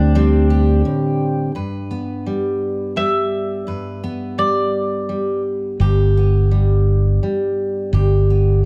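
A hopeful, pastoral acoustic folk piece in an unhurried three-time feel opens with the whole small band together over a suspended dominant chord. A woody, double-strung mandolin carries the melody up front with a slapback echo, while a jumbo steel-string acoustic guitar, fingerpicked and full-bodied, supplies the accompaniment throughout. Briefly behind them, a clean pedal steel guitar with slide and fingerpicks adds a compressed second line, and a dark, round tonewheel organ with key click holds sustained chords through a slowly turning rotary speaker. The passage settles onto the home chord at 1.6 seconds, leaving the mandolin and guitar as the main voices. A direct, prominent fingered electric bass, heard at the very start, returns at 5.8 seconds to anchor the low end beneath the guitar, all within a light reverb.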